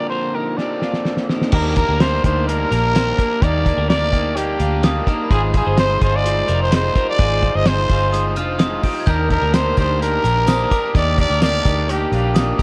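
A raspy, growling trumpet carries the melody over crunchy overdriven guitar and twangy, compressed twelve-string arpeggios in this breezy, nostalgic stretch of jangly indie pop at 127 BPM in Eb major, cut from a longer piece, with a cloth-damped, thuddy drum fill arriving at 0.6 seconds. At 1.5 seconds a round, foam-muted vintage bass and a bell-like glockenspiel, struck with hard plastic mallets in a boxy small room in the background, join as the harmony moves from Bbadd9 through Ab6 to Ebmaj7. A faint, jingly tambourine slips in at 9.1 seconds, and the whole recording sits in light reverb with the worn, warbling pitch drift of old cassette tape.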